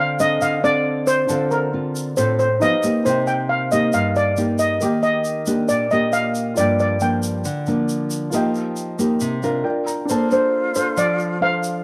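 A moderate spring reverb gives this studio recording a soft halo as a wistful, smooth bossa nova moves at 136 BPM in straight 4/4, taken from a longer piece. An up-front steel pan, shimmering and mellow with a vintage, band-limited tone, carries the melody over a thumb-plucked classical nylon-string guitar and a background grand piano with deep bass and audible action noise, while a grainy tube shaker joins at 0.2 seconds. The harmony drifts from Dm7 through Cm7 and Ebmaj7 to Gm7, the piano adds a fill at 9.2 seconds, and a breathy flute with vibrato enters on a second line at 10.1 seconds as the music opens onto Bbmaj9.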